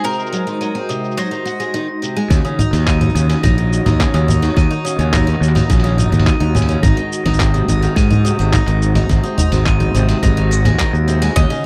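A dry, close 1970s-style studio sound frames this wistful, intimate folktronica excerpt at 106 BPM, where a shimmering, octave-doubled twelve-string guitar picks arpeggios under a sawtooth analog pad with chorus, a mellow rubber-mallet glockenspiel rings a second line, and a bright bowl-back mandolin melody with tape echo appears briefly at the start and returns for a moment at the very end, before a growly, overdriven fuzz bass and a tight electronic kick join at 2.3 seconds alongside muffled, pitched-down sampler drums of cabasa, congas, handclaps and hi-hat over Ab7 and Ebm7 chords.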